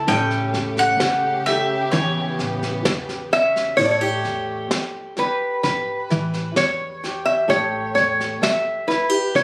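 The lap resonator guitar carries the melody from 3.3 seconds, up front with a metallic, nasal slide tone picked with fingerpicks. This gentle, hopeful acoustic folk excerpt moves at an unhurried 65 BPM in 4/4 with a straight feel, set in A mixolydian over an A7 chord. The opening belongs to a bright bowl-back mandolin solo, its double strings picked up close, while a dark studio string section holds soft-attack, sul tasto chords with light vibrato through the first passage. Beneath them, a full-bodied jumbo steel-string guitar is fingerpicked throughout, and an upright bass adds woody, thumpy pizzicato. A vintage brush drum kit keeps time with a tight kick, medium-tuned snare and dark cymbals, sounding rolled-off in a small room. Light reverb, compression and the studio ambience of a phone recording in the room give the whole an intimate feel.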